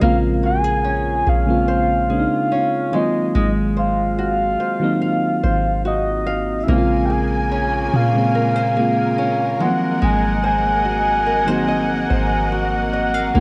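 A straight 4/4 pulse at 72 BPM carries this moody, sensual contemporary R&B excerpt, where a round, octave-layered synth lead with chorus, vibrato and tape echo sings up front over a dark FM electric piano, a fingerpicked nylon-string guitar's arpeggios, a deep, soft 808-style bass and, from 6.7 seconds, a lush bowed string section, all moving between Bbm9 and Ab13 with a cassette-tape haze and light small-room reverb.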